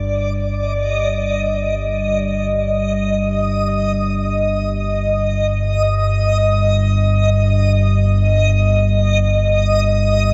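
A deep, rumbling drone sits up front from 0.0 to 10.3 seconds, its dark, ominous tone blending triangle and sawtooth character with a slow attack and long release, fading in across the whole passage. Above it, a reversed, granular texture with a soft attack hovers high, adding a bright, dreamy shimmer that runs for the same span. This short dark ambient fragment, cut from a longer piece, moves in free time with a cavernous, unsettling mood, tuned to A4 = 439 Hz and resting on an Eb/G sonority. A huge, wet reverb with a 7.8-second tail surrounds both parts, which also carry their own built-in reverb. The sound is worn and warbling, like old cassette tape, with a pitch drift that makes the sustained tones waver uneasily.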